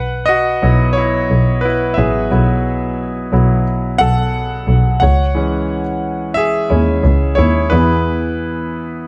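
A clear, intimate concert grand piano leads this earnest, bittersweet piano-driven pop fragment in C# minor, its long sustain and audible action noise sitting up front at an unhurried 89 BPM in a straight 4/4. A single bowed double bass plays beneath it throughout, earthy and slightly nasal with a light vibrato. The harmony opens on Bsus4, settles onto C#m at 5.0 seconds as the piano continues its featured role, and lifts to E at 7.7 seconds, all within a light reverb.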